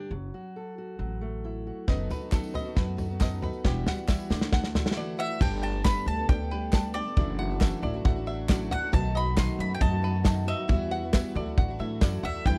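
A dry, close 1970s-style studio sound frames this hopeful indie folk excerpt in G major at 136 BPM, where a fingerpicked steel-string acoustic guitar and a woody, thumpy pizzicato upright bass open the piece before, at 1.9 s, the guitar gives way as a loose drum kit with dark cymbals and a tight kick arrives alongside a shimmering twelve-string guitar, a mellow felt-muted upright piano with audible action noise, twangy banjo arpeggios, very quiet, distant brass chords and a jingly tambourine, joined at 2.3 s by hollow group handclaps, all building through a drum fill and a short break until a bright bowl-back mandolin takes the melody at 5.2 s.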